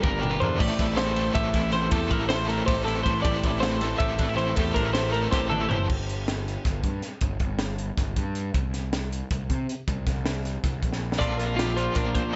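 This math rock and midwest emo excerpt moves in an intricate, playful 7/8 with a straight feel, cut from a longer piece. Two clean, compressed twelve-string electric guitars sit at its core: one picks warm Gm7 and Am7 chords through plate reverb, while the other rings out bright, twangy arpeggios high in its range through analog delay and the same reverb. Tucked in the background, a double-tracked, biting overdriven guitar plays a riff with tremolo. Up front, a punchy picked bass with a fuzzy, overdriven, direct-and-amped bite and a crisp acoustic fusion kit, with its high-tuned snare and pumping small-room sound, carry on throughout, with drum fills marking each turn. The arpeggios and riff fall away at 5.9 seconds and the chordal guitar at 7.2, leaving bass and drums exposed as the harmony settles on Bbsus2 at 8.5 seconds, until all three guitars return at 11.2 seconds on Bbmaj7.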